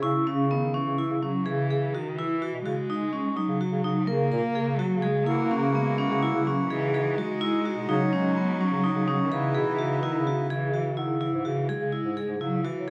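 A ringing, metallic vibraphone with fast motor vibrato spins hypnotic, restless arpeggios over a warm bass clarinet bass line and a dark, expressive bowed cello with portamento in this contemporary chamber excerpt in 11/8 at 252 BPM in C# dorian, while a reedy, breathing harmonium adds sustained chords from 5.3 to 10.5 seconds, a delicate bell-like celesta glints in the background, and a recital hall reverb surrounds the ensemble.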